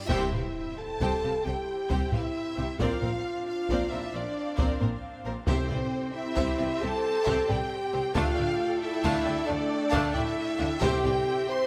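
Close, detailed microphones catch every section on a scoring stage with moderate reverb, giving this cinematic, epic orchestral cue a majestic, adventurous sweep at 90 BPM in a straight 12/8, in C major. It opens on a huge, dark reverse cymbal and impact lasting until 2.8 seconds, as a taiko ensemble struck with heavy sticks drives underneath. The mellow French horn section holds tight sustained chords, the most prominent part, while a distant string section pads beneath and the harmony moves from C through Bbadd9 and Dmadd9 back to C. Lush, expressive violins carry the melody up to C6, joined by a second violin line, with intense violas in the background and smooth, even cellos and double basses anchoring the low end. Timpani played with hard mallets add articulate hits on C3 at 5.5 and 10.8 seconds in this excerpt from a longer piece.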